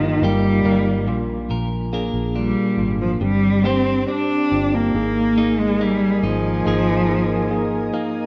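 A rough home-demo sound, dark at the top and bathed in a lush hall reverb, frames this short, longing pop fragment at a slow 70 BPM, cut from a longer piece. A bowed, vibrato-laden cello with expressive portamento carries the melody up front through a digital delay, over a tine electric piano heard through its built-in speakers, clean picked guitar arpeggios treated with a phaser, and a round, punchy foam-muted fingered bass moving through chords from Eb/G and Bb to Gsus4 and Absus2. At 5.6 seconds a thick, detuned sawtooth-and-square unison pad with a slow attack, chorus and phaser rises in, adding bright sustained chords to the melancholic close.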